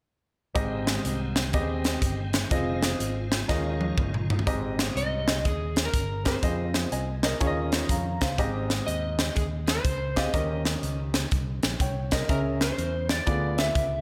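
A big arena sound, with a lush hall reverb and a touch of small-room ambience, frames this jubilant, uplifting uptempo gospel excerpt, which swings in four. A clear, natural concert grand piano sits up front with deep bass, carrying the accompaniment through a slapback echo. A punchy, round fingered electric bass adds a dark, amped low end. A polished, airy acoustic fusion kit with a high-tuned snare and a punchy kick drives the groove. In the background, a piping, scooped tonewheel organ holds sustained chords through a slow rotary speaker and chorus vibrato until 4.5 seconds, bowing out as the drum fill that begins at 3.5 seconds comes to a close. At 5.0 seconds an electric slide guitar takes the melody, played with fingerpicks, its slightly broken-up tone doubled by slapback echo over rich seventh and suspended chords.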